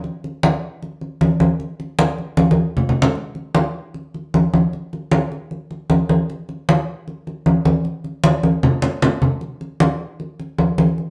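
Low-tuned, ringing congas played with soft hands sit up front, compressed and saturated in a wet studio reverb, driving this sultry, danceable Latin percussion excerpt at 153 BPM in a straight 4/4 that sounds like a band playing live in one room, with drum fills at 2.4 and 8.2 seconds before the music moves into a new section at 9.4 seconds.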